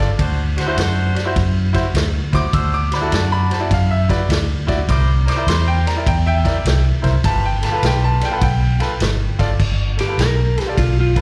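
Electric blues shuffle with a soulful, swaggering mood, caught live through a venue's PA with recital hall reverb. Up front, a dark, round, foam-muted electric bass and a punchy vintage drum kit with dusky cymbals anchor the groove. A clear, polished baby grand piano comps over D7, C7 and G7 chords while a bright, tight horn section adds stabs until about 8.3 seconds, and an electric slide guitar, slightly broken-up and compressed with slapback echo, enters at 10.0 seconds with a short melody.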